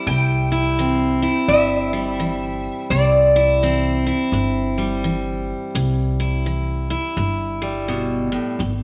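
A lap resonator guitar, played with fingerpicks and a slide for a metallic, nasal voice, carries the high second line until 5.4 seconds over a bright, full-bodied, up-front picked steel-string acoustic guitar and a woody pizzicato upright bass in this easygoing, nostalgic swung country cut in C major at 84 BPM, all set in a wet echo-chamber reverb with small-room ambience.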